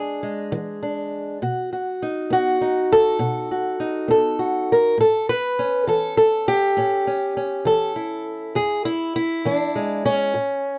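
Acoustic country blues in a rollicking, soulful 12/8 at 67 BPM, this short cut from a longer piece features a lone fingerpicked, ladder-braced acoustic guitar with a dark, woody, boxy tone and old strings, placed up front under close, detailed microphones with light reverb as it moves through E7, B7 at 1.4 seconds, A7 at 5.0 seconds and back to E7.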